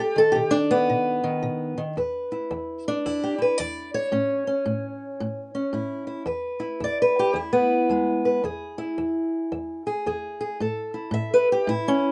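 Swaggering and laid-back, this short excerpt of acoustic country blues in E major swings at 111 BPM on a lone fingerpicked ladder-braced acoustic guitar, its dark, woody, boxy tone and old strings sitting up front in light reverb as it moves from B through E5, A and E before landing on A at 10.6 seconds.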